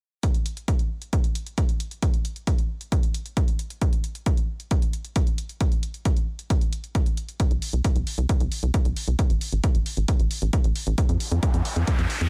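A tight, saturated sawtooth sequencer bass with a plucky filter and sidechain pumping drives this bittersweet uplifting trance excerpt at 134 BPM once it arrives at 7.5 seconds, sitting dark and up front between A1 and F2. Before that, a punchy analog kick and a dry electronic hi-hat carry the straight 4/4 pulse with small room ambience, and an electronic riser joins at 11.1 seconds. The mix stays close and nearly free of reverb, giving the driving groove an intimate, direct feel.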